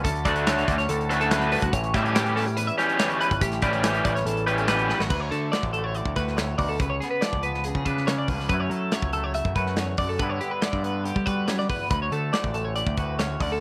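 Math rock and midwest emo with a playful, sunny mood, cut from a longer piece: a clean, chorus-tinged twelve-string electric guitar picks arpeggios up front over a dark, fingered twangy electric guitar accompaniment and a growling, overdriven picked bass. A tight, small-room acoustic drum kit keeps a straight 4/4 feel, while a double-tracked, overdriven garage guitar riff cuts through from 0.3 to 5.0 seconds, and a drum fill at 4.9 seconds opens the next section. The chords move from Dmaj7 and A7 into a run through C#7b9, F#m7 and G6, heard in a light studio reverb.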